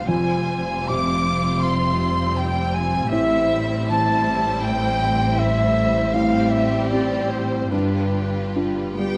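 Tender and moving, this short cut from a cinematic film score unfolds at a flexible, rubato pace of roughly 71-82 BPM in 4/4, tuned slightly low at A4 = 438 Hz. A lush, bowed violin section carries the expressive melody with a soft attack and gentle vibrato, joined in the same register by a pure, straight-toned concert flute playing a second line that sits more prominently in the blend, while a second violin section adds a smooth lower line. Beneath them, a felt-muted upright piano supplies mellow, intimate accompaniment alongside a background viola section, and the cello and woody double bass sections anchor the low end. The harmony moves from Fmadd9 through Am7 and Fmaj13/A before resting on G7, and a dark, distant French horn section enters only at 9.0 s with a brief sustained chord. Close, detailed microphones capture the orchestra in a moderate scoring-stage reverb that gives the whole a roomy, cinematic glow.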